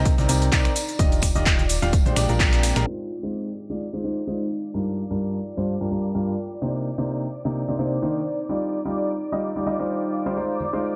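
A warm concert grand piano leads this joyful, feel-good piano house passage at 128 BPM, playing an up-front, vintage-toned riff with deep lows over a round, punchy FM bass and a moody ambient pad with chorus and its own reverb sitting in the background. The piano, bass and pad all pump with sidechain alongside a punchy, tape-warm electronic kick, while a house kit adds metallic hats, finger snaps, handclaps and shaker, and a very quiet, gritty sampler-style kit contributes hi-hat and snare, all on a swung 16th-note feel. Bright, saturated tambourine and congas stay low in the mix, and the whole band hits an accent at 2.4 seconds. At 2.9 seconds the drums and bass drop away, leaving the piano and dark pad as a silky, detuned string pad enters with slow-attack sustained chords and ensemble chorus, all under a filter sweep. The chords move through Cm9, Ebmaj9 and Bb13 before settling into Fm7, Gm7 and back to Cm9, and the tambourine and congas briefly return at 10.4 seconds. 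Light reverb and a low-pass filter soften the overall sound of this cut from a longer piece.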